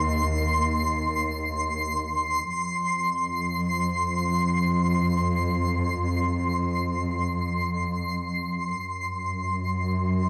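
Drenched in a huge reverb, this ambient fragment sits in a vast, echoing space with a peaceful, serene mood. A dark, woody symphonic cello section holds the low end with soft-attack bowed notes, lush ensemble vibrato and an up-front presence, moving from Cm/Eb to F5 at 2.5 seconds before the harmony falls away at 8.8 seconds. Above it, a twinkling granular texture on a single high note swells in slowly and sustains with sparkling octave-up shimmer and its own reverb.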